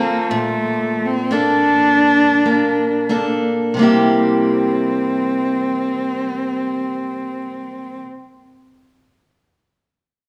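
A dark, nasal solo cello carries the melody up front with vibrato, a soft sul tasto attack and an airy bow, over a picked parlour steel-string acoustic guitar with fresh strings in this wistful, pastoral Celtic slow air in 3/4 and C mixolydian, played rubato at 43-64 BPM, slowing over the first 3.8 seconds as the harmony moves from Bbmaj7 to C7, all set in a wet recital-hall reverb in a short cut from a longer piece.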